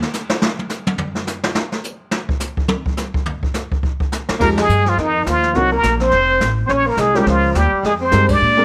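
Small-group swing and bop jazz in F minor, this swinging, moody passage moves at a brisk 210 BPM in 4/4 with a swung eighth-note feel, cut from a longer piece. It opens with a brushed drum kit solo, its dark cymbals, boomy kick and medium-tuned snare sitting up front in a small-room sound with a rolled-off top. The upright bass comes in at 4.3 seconds, pizzicato on gut strings with a woody, thumpy tone. At 4.4 seconds the plunger-muted trumpet takes the lead, brilliant and present with a wah-wah bite, and the band hits an accent a moment later. Beneath it a breathy alto saxophone carries a second line with vibrato, soft attacks and scooped notes, while a boxy upright piano with short sustain comps through chords moving from Fm9 toward Fm11. Another band accent lands at 8.3 seconds, all of it wrapped in a moderate club reverb.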